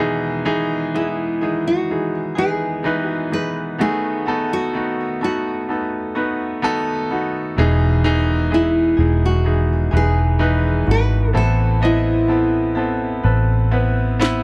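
A slow, straight 4/4 pulse at 63 BPM carries this tender, emotional pop ballad in E major, cut from a longer piece, where a bright, polished concert grand piano and a clean, compressed electric guitar picking arpeggios in the background open together, a full-bodied nylon-string guitar sings the fingerpicked melody with audible finger squeak from 1.0 seconds, a dark, round, foam-muted electric bass sits up front from 7.6 seconds, and an overdriven, cracking electronic snare fills at 14.2 seconds, all captured in a dry, close 1970s-style studio sound.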